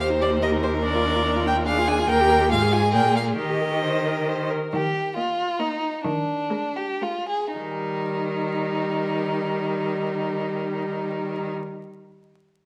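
An even, vibrato-rich first violin carries the melody in this graceful, cheerful excerpt from a quick classical-period string quartet movement in Eb major and 3/4, taken at 107-145 BPM with rubato, while an up-front second violin adds an expressive line with soft attacks and portamento, a focused viola with a smooth top fills in the accompaniment, and a bowed cello anchors the bass, the pace slowing between 4.1 and 7.6 seconds amid a wet recital-hall reverb and a layer of vinyl crackle.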